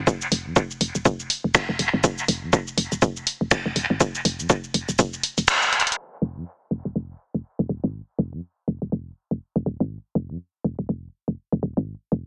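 Minimal techno with a cool, clinical mood, cut from a longer piece and set in 4/4 with a swung sixteenth-note feel. A punchy, tape-warm electronic kick and an analog drum machine playing finger snaps, hi-hat and shaker sit up front, the drum machine trailing dub echo. A round, dark FM bass with a woody, soft tone and fast, decaying notes pumps against the sidechain beneath them. The kick drops out at 5.1 seconds, and after a band accent a drum fill arrives at 5.7 seconds before the drum machine stops at 6.0 seconds. From there the bass carries on alone under a filter sweep for the rest of the excerpt. The whole mix is drenched in a wet echo-chamber reverb, low-pass filtered and given a small-speaker sound.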